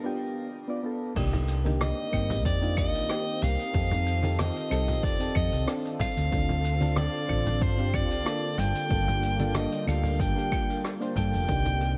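Sunset chillout in G minor at 93 BPM, this short excerpt from a longer piece has a warm, smooth mood. It opens with soft electric-piano-like synth keys playing alone over a G7 chord, their round, warbling vintage tone colored by chorus, tape echo and shimmer reverb. At 1.2 seconds the band arrives as the harmony moves through Cm7, F7, Dm7 and Gm7: a dark, hollow-body fingered electric bass, a punchy overdriven electronic kick, and a jazz brush kit with dark cymbals, claves, hi-hat, rim click and shaker. Bright, dry congas and bongos sit in the background alongside a silky string machine whose slow-attack chords glow with ensemble chorus and shimmer reverb. From 1.8 seconds an edgy soprano saxophone takes the solo melody with jazz-style vibrato, set forward in the mix and trailed by tape echo and shimmer reverb. A light small-room ambience surrounds the whole.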